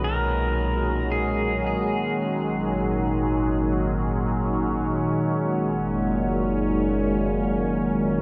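Soaked in a huge, dreamy reverb, this weightless ambient excerpt drifts at 56 BPM in 3/4, with a bright, warbling, detuned wavetable pad sitting up front through a phaser as it holds sustained chords from Cb6 through Ab5 to Gb69, a round, deep analog bass anchoring it below, and a clean electric pedal steel guitar sounding a short melody through analog delay that ends at 2.1 seconds.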